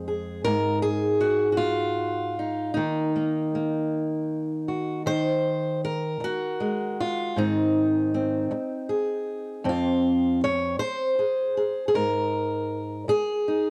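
A fingerpicked steel-string acoustic guitar carries this melancholic, intimate solo folk piece alone, sitting up front with a warm, concert-like tone and the coloring of cassette tape across its span from F2 to Db5. In a slow, straight 6/8 at 52 BPM counted in dotted quarters, it moves through Eb dorian, tuned to A4 = 441 Hz, touching Ab and Ebm before a new passage opens at 5.1 seconds with Ab, Fm and a closing Ab5. The home cassette recording adds a light studio reverb to this brief excerpt cut from a longer piece.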